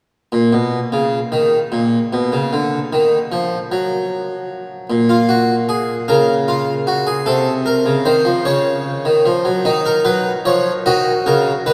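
Contemplative and solemn, this short passage from a longer piece is a baroque-style three-part fugue for solo harpsichord in a straight 6/8, with the harpsichord entering at 0.3 seconds and playing on to the end. The French-style instrument, with two sets of strings, sounds plucked and full, and it sits up front in the mix, spanning from B-flat2 up to E-flat5. A long, wet cathedral reverb surrounds it, like a church or concert hall, as the harmony moves through a closing progression that settles on E-flat minor.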